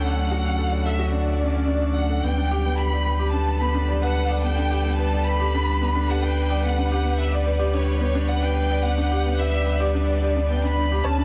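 Piano and strings electronica, tender and luminous, in which a felt-muted upright piano with audible action noise plays a mellow, intimate riff over a deep, round sub bass sitting up front, while a lush studio violin section carries an expressive, vibrato-laden melody and a bright, biting symphonic string section holds sustained chords in the background; a very quiet electronic swell and riser enters at 10.3 seconds, and a brief, gentle, dark pluck with chorus sounds at 11.0 seconds, all set in a small room with light reverb.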